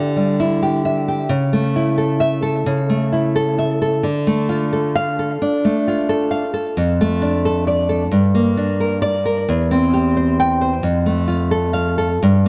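A fingerpicked nylon-string guitar opens on a suspended Dsus24 chord, bright, full-bodied and up front with a touch of tape echo, and carries this passionate, wistful romantic classical piece alone in D minor at a rubato 88 BPM in 4/4, moving through Dm, Gm and C/E to F, tuned to A4 = 438 Hz and set in light reverb and small-room ambience with a dark, warm production, in a 12.5-second excerpt cut from a longer work.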